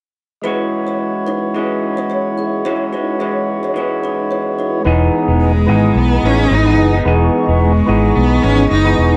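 A focused, bowed cello carries the melody from 5.4 seconds in this hazy, nostalgic indie bedroom-pop excerpt at 109 BPM in E major, over a lightly overdriven, percussive tonewheel organ with a stopped rotary speaker and cassette-tape grit, a lo-fi, slightly broken-up guitar through a small old amp with warbly pitch drift, a woody thumbnail-plucked kalimba with slapback echo playing a second line until 4.7 seconds, a round, punchy foam-muted electric bass, and a hollow, flute-like pad sustaining chords in the background, all in a modest small room.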